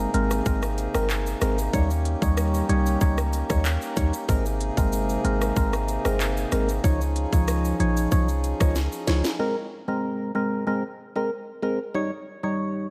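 A dreamy, reverb-soaked mix opens this sunny, summery dancehall excerpt in Ab major at 94 BPM, where a hollow, chorused and phased organ stab pumps over a reedy, breathing harmonium, a deep, boomy 808-style bass and an overdriven island pop drum kit with handclaps, rim clicks and a tight kick, joined by a distant egg shaker, until a drum fill at 8.8 seconds leaves the organ stab playing alone from 9.4 seconds.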